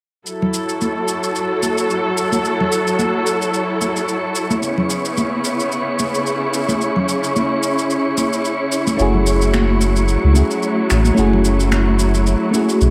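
A dark, lush studio string section holds sustained chords up front through this relaxed, smooth sunset chillout excerpt in F# minor at 110 BPM with a 16th-note swing, joined by an electronic shaker and finger snaps, vintage-toned congas and an airy, breathy wind-like noise texture. The harmony moves from F#m7 to C#m7, and as it returns to F#m7 at 9.0 seconds, a round sub bass and a soft FM electric piano treated with chorus, phaser and delay arrive, all in a moderate plate reverb.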